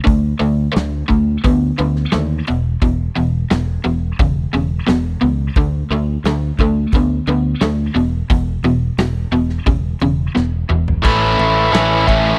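Classic rock with a swaggering, driving mood at 87 BPM in a straight 4/4, cut from a longer piece, where an overdriven, double-tracked electric guitar riff sits up front, trading between D5 and E5 power chords before landing on A at 11.1 seconds. A round, punchy picked electric bass and a big acoustic drum kit with a dark, smooth tone, medium-tuned snare and punchy kick drive the groove, with a drum fill from 10.4 seconds leading into the change. The sound is a dry, close 1970s-style studio recording with a touch of small-room ambience.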